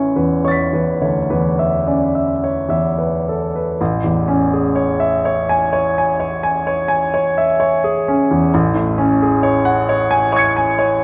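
A clear, polished baby grand piano plays alone in a serene, hazy impressionist classical piece in A major, moving with rubato in 5/4 at roughly 51-67 BPM, its long-sustaining chords drifting from Aadd9 to Amaj7 at 3.8 seconds and settling on F#madd9/A at 8.5 seconds, spanning A1 to C#7 and sitting up front within a wet recital-hall reverb, in a short passage cut from a longer work.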